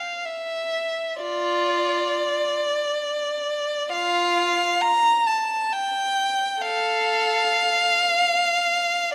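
In free time, a single bowed violin unfolds an expressive classical passage of about 9.1 seconds, cut from a longer piece, with a nostalgic, serene mood. The warm, up-front violin sings between F4 and Bb5 with vibrato, soft attacks and portamento slides. A moderate recital-hall reverb gives it a gentle sense of space.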